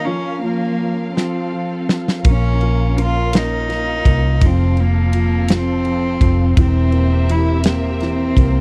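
A bowed solo cello carries the melancholic melody with a soft, floating sul tasto tone, set over woody upright piano accompaniment and lush, veiled chords from a muted string section. This dramatic pop ballad in six-eight is cut from a longer piece, and an acoustic drum kit enters with a fill at 1.2 seconds, bringing a punchy kick, medium-tuned snare and bright ride cymbal. A dark, round, foam-muted fingered electric bass joins up front at 2.2 seconds, all within a dry, close 1970s-style studio sound touched with reverb.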